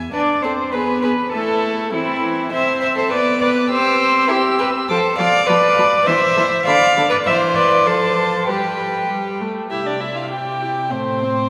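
Two violins and a cello open this graceful, lively classical-period movement for string quartet at 100 BPM in 2/4, with the viola joining at 0.1 s and the music settling into C major from 4.9 s. The dark, nasal first violin carries the melody from a distance, while the second violin plays a rich, close inner line on gut strings in period style, and the viola adds reedy accompaniment with light vibrato further back. The up-front cello anchors the bass with a smooth top, and a generous church reverb surrounds the bowed quartet in this passage cut from a longer piece.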